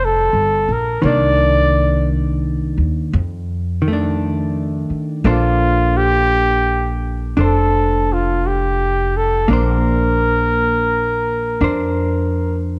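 A slow swung pulse of 57 BPM in 4/4, with the eighth notes lilting at a 67% swing, carries this late-night, intimate jazz ballad in Bb major, cut from a longer piece. A mellow flugelhorn takes the solo melody from the start until 12.6 seconds, its soft attack and present tone sitting up front in the mix. Beneath it, a dark, clean hollow-body electric guitar plays picked, compressed accompaniment through rich chords such as Bb69, Cm9, F6 and Bbmaj9. The acoustic upright bass is plucked pizzicato on steel strings, sounding woody, growly and thumpy as it holds down the low end close to the listener. The guitar and bass run the full 12.8 seconds inside a moderate echo-chamber reverb with a 1.8-second tail and a studio ambience.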